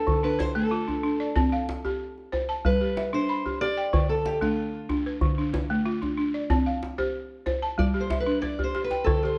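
Moving at 93 BPM in a straight 4/4, this short cut from a longer piece of West African string and xylophone music has a flowing, reflective mood in D dorian. A fingerpicked steel-string acoustic guitar carries the melody across the full 9.4 seconds, its parlour-sized tone dark and boxy and sitting up front. Beside it, a balafon struck with hard rubber mallets plays arpeggios over a broad range, its woody, dry, buzzing sound carrying a vintage, band-limited character. A medium-tuned djembe in a small room keeps time up front alongside them and rounds off the passage with a drum fill at 8.4 seconds. The harmony cycles through Dm, C5 and G, and the production is dark with light reverb.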